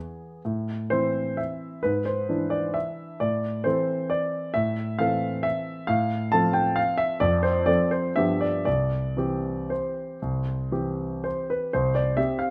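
A clear concert grand piano plays alone and up front through this elegant, bittersweet classical waltz in 3/4, its natural tone reaching from a deep bass register up into the treble. The rubato tempo moves between 109 and 141 BPM as the harmony starts in A minor with Am and E7/G# chords, then turns toward C major at 5.9 s through F and G7 before settling on C. A moderate large-studio reverb rounds out this short passage cut from a longer piece, which ends at 12.5 s.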